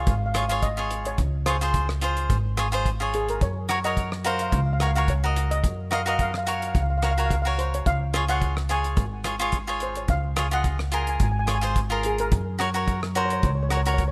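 A short cut from a longer calypso opens at once with steel pan, cavaquinho and upright bass together, and the cloth-damped, thuddy drum kit joins a moment later, all settling into a carefree, sunny groove at 108 BPM in 4/4 with a light swing on the sixteenths in Db major. The steel pan carries the melody, a double seconds pan played with medium rubber sticks, its shimmering, mellow tone sitting soft in the mix and trailed by a tape echo. Beneath it, the picked cavaquinho is crisp and up front, while the pizzicato upright bass on steel strings gives a woody, thumpy low end. The drums keep to hi-hat, a tight kick and rim clicks, with a small-room sound and a rolled-off top. The harmony moves from Dbmaj7 to Gb at 3.4 seconds, back to Db at 7.9 seconds and to Gb again near the close, and the whole thing has the feel of a rough home demo, with studio ambience and some lossy compression artefacts.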